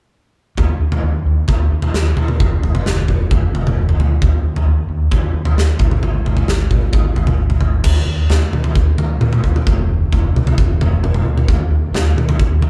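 Jangly and upbeat, this indie rock excerpt moves in a straight 4/4 with the energy of a band playing live together in one room. A big acoustic rock drum kit sits up front, its punchy kick, medium-tuned snare, toms and bright crash cymbals carrying the sound of a large room. Beneath it, an overdriven fingered electric bass sits further back in the mix, amped and warm with a punchy edge as it ranges from F1 up to Eb3. Both parts play together from 0.6 seconds to 12.7 seconds. The piece moves from its opening section into a new one at 7.8 seconds, and the dry recording keeps the drums and bass close and direct.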